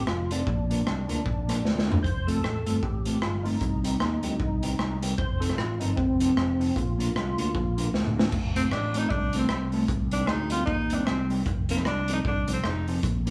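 A gritty, saturated garage drum kit with a boomy kick and dark cymbals sits up front in this bouncy, cheerful ska at 153 BPM with a swung feel in F mixolydian, while a fat, lightly overdriven tonewheel organ with percussive attack, chorus vibrato and slow rotary speaker carries the melody until 7.9 s, a dark, clean fingered electric guitar and a warm fretless electric bass hold down the chords and low end, and from 8.6 s a smooth, up-front tenor saxophone with light vibrato takes the solo, the band playing live in a moderately reverberant stone room.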